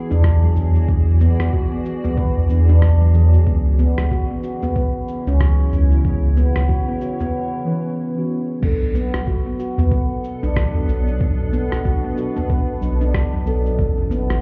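Hypnotic and warm, this organic downtempo excerpt swings gently in 4/4 as a ringing, meditative handpan plays arpeggios over a round, up-front sub bass and a cloudy, evolving granular pad, while dark, muted felt-like synth keys sit in the background, treated with chorus, phaser and delay. A soft electronic kick, a gritty, overdriven sampler-style kit of cabasa, crash cymbal and rim click, and a deep udu tucked behind supply the groove, with sidechain pumping breathing through the bass, pad and keys. The mix sounds muffled, as if heard through a wall into a club, and a break at 7.3 seconds leads into the second section at 8.6 seconds.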